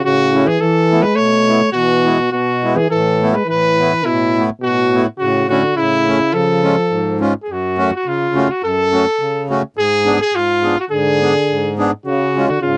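This close, dry 1970s-style studio recording carries a light reverb and comes from a longer piece of jolly, bouncy alpine folk in the manner of an alpine dance band. It moves at 105 BPM in a straight 2/4, starting in A major and turning to F# harmonic minor at 7.5 s. A clear, up-front trumpet carries the melody throughout in a classical style, its tone set back in a roomy space. Beneath it, a euphonium plays a second line with a warm, gently vibrato-touched sound, also distant and classical in style; it drops out at 7.2 s and returns at 10.9 s. The accordion supplies the accompaniment with a reedy, single-reed voice in dry tuning, close-miked and full. The harmony moves through suspended and added-tone colours before the minor section leans on F#m, G#dim and a closing C# chord.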